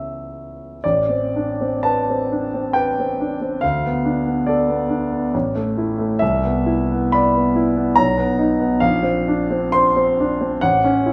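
Impressionist classical solo piano with a nocturnal, mysterious mood, moving in a flexible rubato triple metre through richly coloured harmonies such as Am11, Cmaj9 and Bbadd9 before settling on A at 10.6 seconds. The concert grand sounds clear and natural, set up front with a deep bass and sitting in a wet recital hall reverb. This brief fragment is cut from a longer piece.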